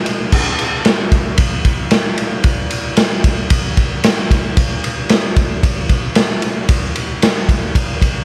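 A dry recording puts a gritty, saturated acoustic drum kit up front, its rolled-off top giving the sound a dark edge. This short, driving rock clip at 113 BPM in a straight 4/4 features only the raw garage kit, heard from 0.1 to 8.1 seconds with its punchy kick, medium-tuned snare, ride and crash cymbals. The mood is heavy throughout.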